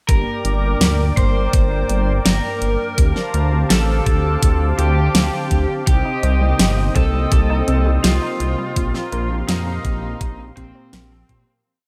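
A bright, 1980s-style digital production with light reverb frames this short, nostalgic and nocturnal synthwave piece in G minor at 83 BPM, moving through Gm, Dm7, Cm and Bbsus2 before fading out from 7.8 seconds. A thumpy, tape-tinged electronic kick pairs with a fat, gated-reverb pop snare and closed hi-hat that sit up front, beside a deep, rumbling detuned saw bass driving in eighth notes. Meanwhile, a smooth, vintage analog pad pumps with sidechain under dark, round synth brass playing held chords with syncopated pushes. An overdriven, lo-fi lead guitar through a small cranked amp repeats a riff melody with chorus and delay, and from 5.9 seconds a warbly, dusty pluck adds a mellow eight-step arpeggio in the background.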